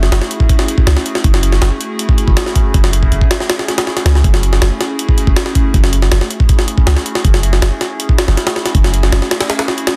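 Drum and bass with a jungle edge at 160 BPM in F# minor, this raw, dark excerpt sets an up-front, gritty, pitched-up sampler drum kit of thumpy kick, high-tuned snare and hi-hat against a deep, decaying sine 808-style bass that holds low between F#1 and C#2 until 9.2 seconds, all inside a digital ambience and a dense, heavily limited modern master.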